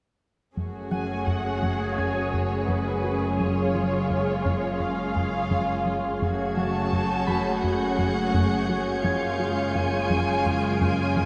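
Cinematic and ominous, this uneasy cue moves at 85 BPM in a straight 4/4, sitting in F# harmonic minor and swaying between F#madd9 and C#/F# chords. Muted symphonic strings, played con sordino with a veiled, dark tone, enter at 0.6 seconds: violins carry a second line, violas fill in accompaniment, and cellos and double basses hold the low F# beneath, the basses sounding lush. A punchy, funky analog bass riff with a fast, decaying filter pluck drives the lower register, while a bubbling synth texture with random filter steps, chorus and its own reverb sustains detuned, resonant chords above. From 0.9 seconds a distant muted chamber violin section takes the melody, and a ringing, fingerpicked concert harp adds texture in the background. At 6.2 seconds a second muted symphonic violin section enters high as a close, lush texture, all of it set in a moderate scoring-stage reverb in this cut from a longer piece.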